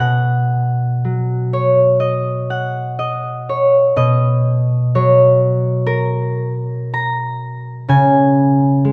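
Classical solo harp in a peaceful, graceful rubato, this short cut from a longer piece features a concert harp played fingerpicked and up front, its ringing tone captured by close, detailed microphones within a moderate recital-hall reverb.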